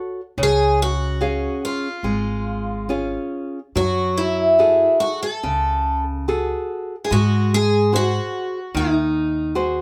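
A fado-style ballad in F# minor, moving with a longing, passionate rubato feel around 72 BPM, this excerpt moves from C# through F#madd9 to G#7. A shimmering, octave-doubled twelve-string acoustic guitar carries the melody up front, while a bright, fingerpicked nylon-string guitar with fresh strings accompanies from 0.0 seconds, and a woody pizzicato upright bass joins at 0.4 seconds. The trio sounds like a band playing live together in a small room with a wet, short reverb.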